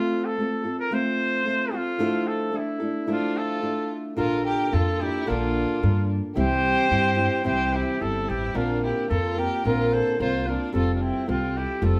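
A straight 2/4 pulse at 110 BPM carries this romantic, festive mariachi passage in F major, cut from a longer piece, as a fingerpicked nylon-string guitar and a clear classical trumpet, played with light vibrato and set back in the room, open together over chords moving from F through Dmadd9, Bbmaj7 and C. A rich, smooth-topped bowed violin adds a second line at 3.1 seconds, and a woody, growly pizzicato upright bass joins at 4.2 seconds beneath the warm guitar. The band plays live in one room, wrapped in a wet stone reverb.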